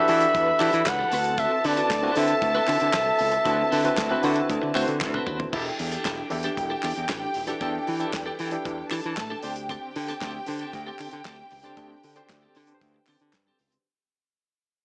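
This driving, danceable disco excerpt at 116 BPM opens with a mellow flugelhorn carrying the melody up front with a gentle vibrato. Beneath it sit soft-attack bowed strings, a barky, overdriven electric piano with fast tremolo, and a clean, picked electric guitar with tremolo tucked in the background. A bright, punchy fingered electric bass and a damped 70s drum kit enter almost at once; the kit has a tight kick, a medium-tuned snare, dark cymbals, hi-hat, toms, crash and handclaps, and crisp group handclaps sit behind it. The harmony moves from Em11 to D13, returns to Em11 at 5.5 s, and later moves to D7sus4. The flugelhorn stops at 5.0 s as a drum fill leads into a new section, and from 5.5 s the remaining parts carry on under a fade-out until the cut at 13.9 s. The string section holds a smooth, intimate second line throughout, while light reverb and small room ambience give the mix a small-speaker sound.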